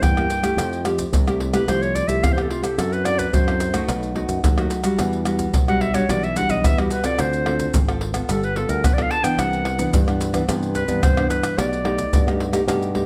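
A breathy, whispered jazz-style clarinet solo with vibrato and a soft attack leads this bittersweet, yearning samba-and-choro excerpt in E minor at 109 BPM, sitting intimate and up front over fingerpicked classical nylon-string guitar, a bright, growly fingered electric bass through an envelope filter, and a close, dry percussion bed of maracas, tight surdo, pandeiro and tamborim, all in a light reverb as the harmony moves from a rootless C7 through Fmaj9 and Em9 to a closing B7alt.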